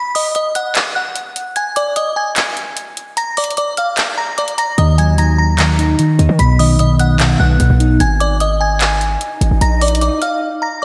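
Melancholic, dark trap hip hop at 149 BPM in a half-time feel, cut from a longer piece, where a delicate, tinkling FM tine bell with chorus carries the melody up front from the start, electronic drums with metallic hi-hats and handclaps enter at 0.2 seconds, a dark, fingered clean electric guitar with analog chorus and a punchy, heavy 808-style bass join at 4.8 seconds, and an electronic swell enters near the close, all soaked in a lush hall reverb for a dreamy mix over chords moving from B through Ab5, Bb and Ebm.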